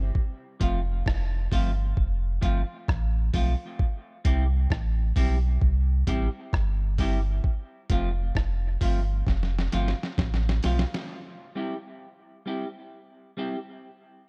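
Dub reggae in C major at a slow 66 BPM, hazy and spacious, moving between F and C chords in this cut from a longer piece. A deep, round sine sub bass sits up front beside a muffled, pitched-down sampler-style drum kit of thumpy kick, medium-tuned snare, rim click and hi-hat, with a drum fill at 9.3 seconds, while a clean, picked semi-hollow electric guitar with dub echo fills in the accompaniment. Once the bass and drums stop, the guitar plays alone until 13.6 seconds in a dry, close-sounding mix.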